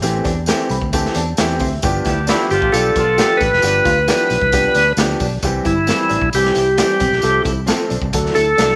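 With light reverb and the feel of a short clip from a longer track, this joyful 1960s-style soul groove sets a gritty, saturated garage drum kit, a round, dark fingered electric bass, a woody upright piano with audible action noise and a fill at 0.5 seconds, a hollow-body archtop guitar riff and a jingly tambourine in the background, and a punchy horn section that enters briefly at 2.1 seconds, under a reedy, up-front tonewheel organ with key click, slow rotary speaker and slapback echo that carries the melody and takes a solo from 5.4 seconds.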